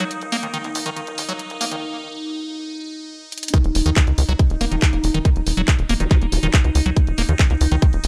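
A dry, close-sounding slice of hypnotic, alien psychedelic trance, where a punchy, saturated sawtooth sequencer bass drives up front beneath a squelchy, resonant acid bass riff with phaser and tape echo, a morphing, bright wavetable pad holding sustained chords, warm-hatted garage handclaps and hi-hat, and a breathy, chorused pad that stops at 1.8 s as the break begins, before a tight electronic kick lands with the drop at 3.5 s and a faint, nasal vowel-sweep wobble bass slips in at 4.6 s.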